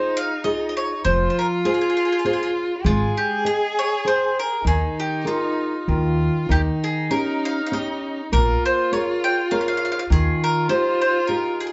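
Italian folk serenade, romantic and lively, in a swung, rubato 3/4 at 100 BPM, where a bright, picked bowl-back mandolin carries the melody on double strings while a rich, focused violin adds a bowed second line with vibrato. A warm nylon-string guitar fingerpicks classical accompaniment throughout, and a woody, thumpy upright bass on gut strings plays pizzicato from 1.1 s to 10.3 s as the harmony moves from Fm through Abmaj7 and Eb7 to Bbm7. This short fragment of a longer piece sits in a studio reverb, heard from further back in the room with a softened top end.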